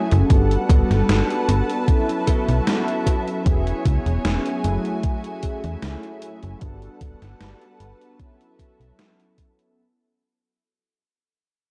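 Woozy and nostalgic, this vaporwave excerpt at 76 BPM drifts through jazzy chords such as Gmaj9 and F#m9 over a fade-out lasting the full 9.8 seconds: round, detuned sawtooth synth brass with analog chorus and tape echo carries the accompaniment over woody, bowed studio strings, a clean, compressed electric guitar riff with lush chorus sits in the background until 3.3 seconds, a snappy, metallic FM bass up front carries a filter sweep, and a thumpy electronic kick joins a drum machine's hi-hat and gated-reverb snare, all set in a dark production with light reverb.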